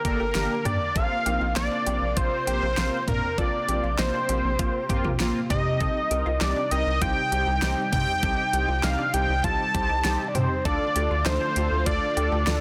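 This nocturnal, cool synth-pop excerpt opens with every part sounding together at 99 BPM in a straight 4/4: a fat, detuned analog lead carries the melody up front, its bright sawtooth tone evolving beneath chorus and vibrato. Beneath it, a mellow synth brass plays accompaniment in a round, brassy register, its chorused sawtooth and triangle layers touched by ring modulation and a filter sweep. A lush vintage string machine holds sustained chords in the background, its slow attack and ensemble chorus adding a full bed. A very quiet analog pluck traces arpeggios with a short decay, colored by chorus and phaser. A rubbery, hollow square bass bounces along with a resonant filter pluck, while an electronic pop kit supplies a knocking kick, fat snare, crisp hats and toms. The harmony moves from Gm through Bbsus2 and Cm to Dm at 10.7 seconds, all set in light reverb, digital ambience and a dense, heavily limited modern master.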